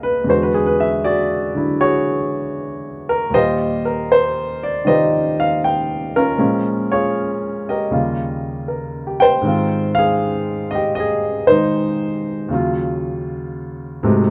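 A moderate stone-room reverb surrounds an up-front, warm and natural baby grand piano with short sustain in this playful, swinging solo jazz fragment from a longer piece at 78 BPM in 4/4, its chords moving through E9, Eb69, Bbm7 and Eb9 before it settles into Ab major at 9.4 s on Ab6 and reaches Ebm9 at 12.5 s.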